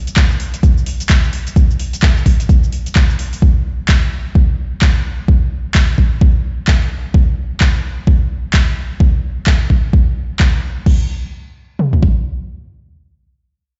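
Gritty, swaggering bass house at 129 BPM with a 60% swing on the 16ths, cut from a longer piece, where overdrive roughens both drum kit layers: an up-front knocking kick with toms that runs until 12.2 seconds, and a lower bed of crash cymbal, handclaps, metallic hi-hat and shaker that stops at 11.0 seconds, all heard as if blasted through a big sound system in a bare room with large studio reverb and a dark, dulled top end.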